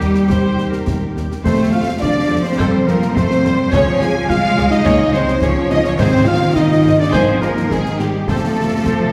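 Soaring and heroic, this cinematic adventure-film cue moves in a straight 4/4, cut from a longer piece and heard from further back in a reverberant concert hall. A clear, intense violin section carries the melody from a distance, with vibrato and a lush bowed tone, while a solo clarinet, an airy flute section and a very quiet, smooth-topped second violin section trace supporting lines in the same register. Dark French horns hold sustained chords prominently in the middle of the texture, beside a focused chamber viola section accompanying in the background and a very quiet, ringing harp playing fingerpicked arpeggios. Cellos and a rich, even double bass section anchor the low end, the basses dropping out at 8.4 seconds. Concert snare, bass drum and clash cymbals with a dark cymbal colour sit close and dry against the hall's ambience, as the harmony moves through Eb, F, Db and Ab before returning to F at 8.3 seconds.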